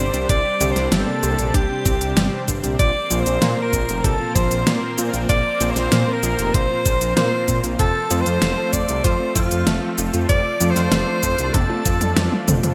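A clear alto saxophone carries the melody with vibrato and digital delay in this moody, nostalgic synthwave excerpt at 96 BPM, joined by an airy, dreamy lead above, a silky analog string pad and a dark detuned saw bass, both pumping with sidechain, a very quiet analog pluck arpeggio, mellow FM electric piano stabs with cassette-tape warble in the background, and a pop drum kit with fat gated snare, crisp hats, cabasa and toms over a knocking electronic kick, rolling into a drum fill at 11.5 seconds, all set in a lush hall reverb with bright 1980s-style digital production as the chords move from Csus2 through Bbsus2 to F.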